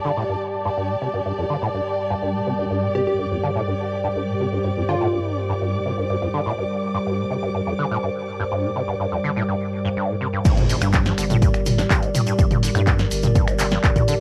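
Recorded at home on cassette in a small booth, this hypnotic, driving acid house excerpt has a lo-fi, nostalgic haze, with a warbling, detuned pad holding sustained chords under a squelchy, resonant sawtooth acid bass riff carrying overdrive and tape echo, while a dark, bowed string section with vibrato and portamento sits close and up front, all pumping against the sidechain. A catchy square-wave unison lead plays a brief melody from 3.0 to 5.4 seconds as a filter sweep works on the acid bass, and at 10.5 seconds the strings stop and the drop arrives with a background electronic impact. In the drop, a deep, thick, saturated sine sub bass joins a dry, punchy analog kick and a drum machine of snare, hi-hat, handclaps, finger snaps, toms and crash cymbal with low-pass filtering, plus grainy, mellow maracas in the background.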